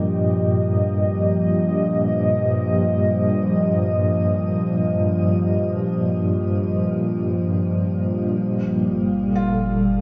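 Steeped in a wet, echo-heavy chamber reverb, this melancholic, serene ambient excerpt in free time opens on a warbly, detuned tape-like pad holding sustained chords up front through chorus, tremolo and shimmer reverb with a filter sweep, moving from Ebadd9/G to Gm9 at 8.4 seconds, where a round sine sub bass enters beneath it, before a felt-muted upright piano, soft and intimate with audible action noise, adds shimmering arpeggios at 9.4 seconds.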